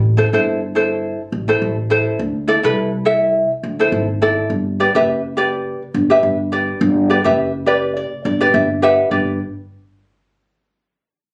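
Calypso with a bouncy, sunny lilt, cut from a longer piece and captured on a phone in the room with light club reverb: a woody, thumpy pizzicato upright bass on steel strings sits up front from the start, joined at 0.2 s by a light, fingerpicked acoustic ukulele over Am7, Dsus2 and Gmaj7, which adds a fill at 7.4 s before both parts stop at 9.4 s.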